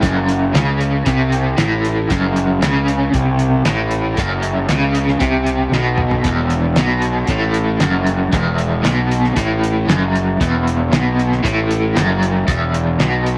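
Dark and trippy, this short psychedelic rock passage, cut from a longer piece, moves at 116 BPM in a straight 4/4. An overdriven electric guitar plays a low riff throughout, its bright, double-tracked tone sitting up front with a tremolo effect. Beneath it, a fingered electric bass adds fuzz and overdrive, with a round, punchy sound that also sits forward in the mix. A cloth-damped drum kit plays hi-hat, kick, snare and toms with a muffled, lo-fi character, a fat snare, a tight kick, a rolled-off top and a gritty, small-room feel. A drum fill from 5.7 to 6.3 seconds comes just before the harmony moves from F#m to E5 at 6.3 seconds, and light reverb with studio ambience surrounds the whole performance.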